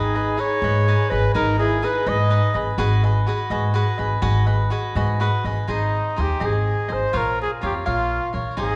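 Festive and romantic, this short mariachi excerpt moves at 83 BPM in a straight 6/8, starting in G# minor and brightening to Ab major at 5.7 s. A warm, classical-style trumpet carries the melody up front, sounding together from the start with a darker trumpet with light vibrato and a smooth top on a second line until 2.6 s, then returns alone over bright, crisp picked cavaquinho and a woody pizzicato upright bass that anchors the low end. Moderate hall reverb gives the ensemble a spacious, resonant setting.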